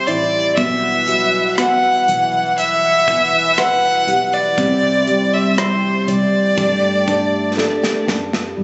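A slow, straight 60 BPM pulse in 4/4 carries this tender, emotional pop ballad in G major, where a clear, close violin with smooth vibrato sings the melody over soft felt-muted upright piano with audible action noise, a shimmering chorused pulse-width pad in the background, very quiet picked steel-string acoustic guitar arpeggios, a worn, slightly out-of-tune tine electric piano holding the bass, and a polished modern drum kit whose fill arrives at 7.6 seconds, all heard through a phone-recorded small-room sound with club reverb and a dulled top end.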